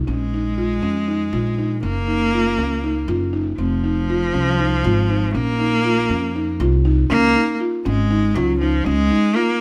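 Contemporary instrumental chamber music in 7/8, this short passage cut from a longer piece moves at 239 eighth-note beats per minute with a straight, restless and pensive feel in B-flat minor. A buzzing marimba played with soft mallets spins mellow, woody arpeggios in a narrow middle range throughout. A pizzicato upright bass sits up front with a warm, woody, acoustic tone on steel strings, and it stops at 9.1 seconds. The bowed cello, a single player with focused vibrato, carries the melody in its low-middle register, also placed up front. The harmony moves from Bbm7 through Gb6 and Fm back to Bbm, then turns to Db at 7.1 seconds. A light reverb gives the trio a touch of air around an otherwise dry marimba.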